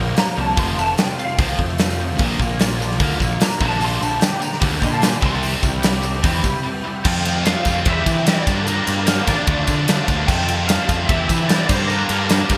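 A glossy 1980s-style digital production with light reverb frames this wistful yet upbeat indie rock in F major at 148 BPM, where a punchy drum kit with gated reverb sits up front, a fuzzy overdriven bass and two crunchy, chorused guitars drive the riff, a twangy, slightly broken-up lead guitar carries the melody, a jingly tambourine stays in the background, and a very quiet rotary organ holds chords until 7.0 s, dropping out during a short break from 6.6 s that closes the opening guitar solo.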